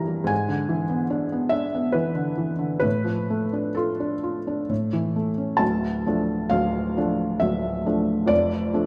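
In a rubato 3/4 at 64-77 BPM, this yearning, mournful excerpt from a romantic classical nocturne features a felt-muted upright piano alone, soft, mellow and intimate with short sustain and placed up front, ranging from D1 to Bb5 through chords such as E7/G#, Dm/A and A before a new section opens on Dm at 5.6 seconds, all set in a moderate recital hall reverb with a dark production and a faint mains hum.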